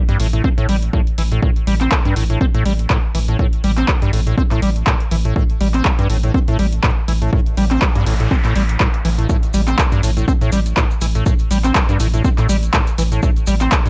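Acid house at 122 BPM in A minor with a swung 16th-note feel, this trippy, hypnotic passage cut from a longer piece rides on a squelchy, resonant liquid acid bass riff with filter sweeps, overdrive, analog chorus, cassette tape color and digital delay, sitting up front over a deep, thick saturated sub bass with sidechain pumping. A punchy, tape-warm kick drives things alongside a dry, overdriven analog drum machine of handclaps and hi-hat, all in a close, nearly reverb-free space over a single A7(no3) chord. An electronic noise sweep passes through between 7.5 and 9.3 seconds, after which grainy, mellow maracas join quietly in the background.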